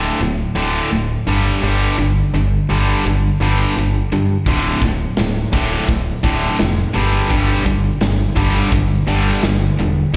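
This short cut from a longer classic rock piece sounds like a live gig heard through the venue's PA, with small room ambience and a recital hall reverb around the band. The mood is brooding and gritty, at a straight 84 BPM in 4/4, with the tuning sitting at A4 = 441 Hz. An overdriven electric guitar, bright, picked and up front with harmonic tremolo and slapback echo, plays a low riff alongside a tight distorted guitar that also carries slapback echo. A modern fingered electric bass, direct and up front, holds down the low end under the guitars as the chords move between D5 and G5. At 4.5 seconds a big acoustic rock kit enters with a punchy kick, a medium-tuned snare and hi-hat, sitting up front in a big room sound through to the end at 10.2 seconds.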